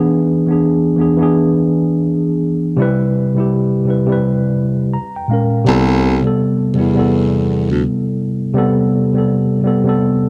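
Lo-fi hip hop with a reflective, nostalgic mood and a swung feel, this short cut from a longer piece is carried by a worn, slightly out-of-tune tine electric piano, muffled by cassette tape and low-pass filtering, that plays jazzy chords up front throughout, with fills at 4.6 seconds and again at 10.0 seconds. From 5.7 to 7.8 seconds a close-miked baritone saxophone takes a brief solo in its low register, breathy and soft-edged with subtone and vibrato. A plate reverb and a dark, warm production give the piece a hazy, late-night glow.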